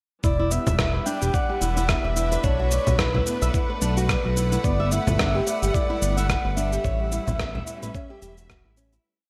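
A breathy, flute-like synth lead with chorus, tremolo and vibrato floats a free-roaming melody over this mystical, hypnotic organic downtempo piece, alongside fingerpicked flamenco guitar arpeggios with audible finger squeak and digital delay in a ten-step loop drifting against the bar, a rich bowed string section with sidechain pumping on slowly shifting chords, a smooth, dark gliding synth bass in a dotted rhythm up front, a gritty, thumpy electronic kick and an up-front layered beat of electronic shaker, low conga and rim click with gated reverb, all in a bright 1980s-style digital production that fades out from 6.1 seconds.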